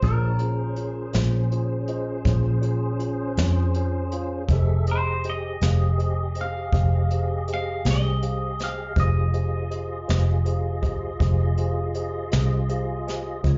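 Heard as a live club gig through the venue's PA with a dull top end, this brooding, mournful slow blues in F minor at 54 BPM in 12/8 moves from Bbm7 to Fm7 as a twangy, compressed clean electric guitar carries the melody with phaser and slapback echo until 10.4 seconds, over a mellow tine electric piano that adds fills at 3.4 and 12.3 seconds, a tonewheel organ holding chords with key click and slow rotary speaker, a dark, round, foam-muted bass sitting up front, and an airy brush kit with a punchy kick.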